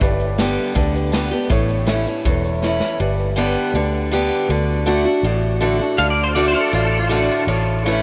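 Honky-tonk and classic country in an easygoing, sunny mood, this short piece cut from a longer one sets a bright, boxy picked archtop guitar up front beside a dark, mellow grand piano with audible action noise and a round, foam-muted fingered electric bass. An airy natural country drum kit with a punchy kick and medium-tuned snare plays until 2.9 seconds, closing on a fill, and a clean pedal steel guitar with fingerpicked slide and volume swells, colored by ensemble chorus and digital delay, enters as a second line at 6.0 seconds. The whole mix is dreamy and soaked in a huge ambient reverb.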